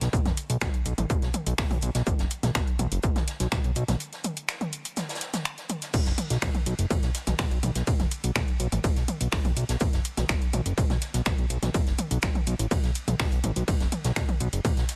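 Set in a small room ambience with audible lossy compression artefacts, this hypnotic, cinematic melodic techno passage, cut from a longer piece, moves at 124 BPM in a straight 4/4 and is tuned to A4 = 436 Hz. An overdriven, heavy electronic kick sits up front beside a fat, saturated, wave-folded analog bass that pumps against the sidechain, while an overdriven deep house kit brings metallic hats, crash, ride, finger snaps and toms. A distant, roomy acoustic kit of bundle-stick snare, hi-hat and shaker sits in the background, and a break arrives at 4.0 seconds before the groove returns at 5.9 seconds.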